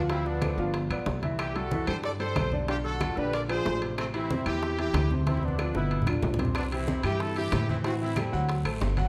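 A clear upright piano with audible action noise and a thumpy, up-front pizzicato upright bass open this danceable, passionate salsa fragment at 186 BPM, joined at once by a brilliant horn section carrying the melody with light vibrato over a Dm7–G7–C6 progression. Tight, close and very quiet bongos add their part, while soft-handed low-tuned congas, ringing metal-shell timbales and distant woody claves sit in the background. A drum fill arrives at 5.3 seconds and a raspy guiro enters at 6.6 seconds, all within a dark production and a moderate recital-hall reverb.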